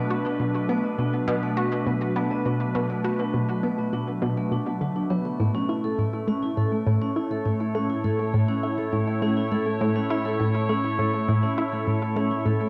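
A morphing, warbling wavetable pad holds sustained chords under ringing, metallic, band-limited vibraphone arpeggios with a medium motor vibrato and tape echo, and a round, detuned sawtooth pluck joins at 0.1 s with a chorused riff, all three parts sitting up front. This cosmic, expansive space music moves at 102 BPM in 4/4 in A major, tuned to A4 = 438 Hz, shifting from Bm7 to A at 5.4 s. A moderate spring reverb and a cassette home-recording character frame this excerpt cut from a longer piece.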